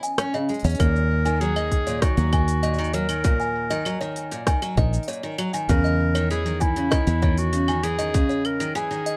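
Folktronica at 98 BPM in 4/4, intimate and wistful, opens with a short break where a delicate, tinkling music box with tape echo and an organic electronic kit of claves, hi-hat, rim click and shaker set the scene, joined at 0.2 s by a full-bodied, picked steel-string acoustic guitar playing delayed arpeggios with audible finger squeak. A punchy, foam-muted fingered electric bass sits up front, and at 0.8 s a bright, present clarinet takes the solo melody with delay as a tight electronic kick drum comes in. The chords move from C#m to D#m and then C#madd9/E under light reverb in a dark production, in a cut from a longer piece.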